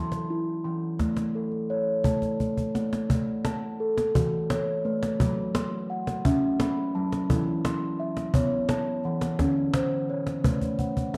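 Dreamy and gentle, this short excerpt cut from a longer piece sits in a meditative world style, moving at 57 BPM in a straight 6/8 lilt in A major pentatonic. A steel tongue drum carries the music from the start with ringing arpeggios struck with firm rubber mallets, its round, pure tone captured up front in a boxy small room and colored by cassette tape. A snappy acoustic cajon with snares joins at 0.1 seconds, heard up front in a live room, and drum fills arrive at 2.2 and 10.6 seconds. The harmony drifts from Am/E to A, then through F#m, E5 and D as the opening section gives way to a longer second one at 3.1 seconds. A wet spring reverb and the homespun feel of a cassette recording lend the whole a hazy, intimate glow.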